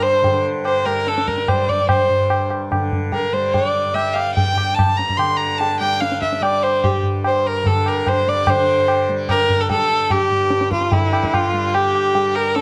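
Longing and introspective, this Hindustani classical fragment in G raga bhimpalasi moves at 146 BPM in 4/4, with a clear, biting bowed violin carrying the melody up front with vibrato, an intense tone and a smooth top, a bright, softly plucked tanpura drone buzzing and shimmering beneath, and a low-tuned, ringing tabla entering at 0.2 s with a close, dry sound, set within light reverb and a dark, warm production as the music moves into a new section at 8.5 s.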